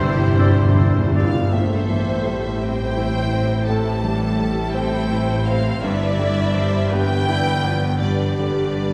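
This excerpt of an emotional, cinematic film score sits back in a wet scoring-stage reverb, unfolding at a rubato 56 BPM in 6/8 with an uplifting, tender mood over Cadd9/G, Am7 and Em7/G. Hard-mallet timpani strike up front in a fill through 1.5 seconds, while a dark clarinet, airy flute section, oboe and very quiet French horn section colour only the opening moment. A rich, vibrato-laden violin section carries the melody over a lush second violin line, focused violas, an intimate piano with audible action noise, a ringing thumb-plucked harp, a very quiet distant cello section and smooth double basses that continue to 8.9 seconds.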